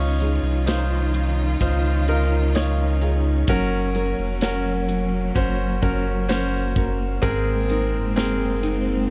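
A tender, heartfelt pop ballad at 64 BPM in Db major, where a clear, natural grand piano sits up front over a round, deep sine sub bass, lush bowed strings with vibrato and portamento hold sustained chords, and a full-bodied, fingerpicked nylon-string guitar plays arpeggios in the background from 0.2 seconds beside an acoustic drum kit with a punchy kick, medium-tuned snare, hi-hat and a rolled-off top, the harmony moving from Dbadd9 to Gb to Abadd9 in light reverb and studio ambience.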